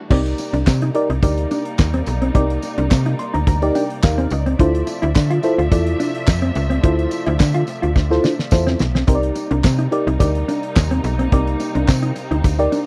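Early-eighties boogie funk at 107 BPM, funky and danceable, taken from a longer piece and built on Cm9, Dm9 and back to Cm9, with a damped, fat-snared drum kit with handclaps up front beside a snappy, metallic slap-like FM bass. A round, dark FM electric piano with chorus and phaser adds a fill between 2.9 and 4.6 seconds, while a clean, compressed electric guitar plays a riff with subtle chorus, veiled muted strings hold lush bowed chords in the distance, and a jingly tambourine sits in the background. The drums break into a fill from 8.0 to 9.1 seconds, and the whole is a dry, close 1970s-style studio sound with little reverb.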